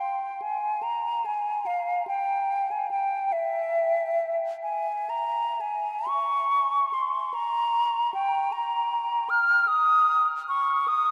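This classical excerpt for unaccompanied concert flute is mournful and meditative, moving freely in 6/8 with a rubato pulse of roughly 39 to 53 beats per minute, counted in dotted quarters and tuned to A4 = 442 Hz. The flute plays alone from 0.0 to 11.1 seconds, ranging from E5 to F6. Close-miked and up front, it has an airy, hollow tone with vibrato and crisp attacks, set in a vast, echoing space whose huge ambient reverb rings for about 8.0 seconds.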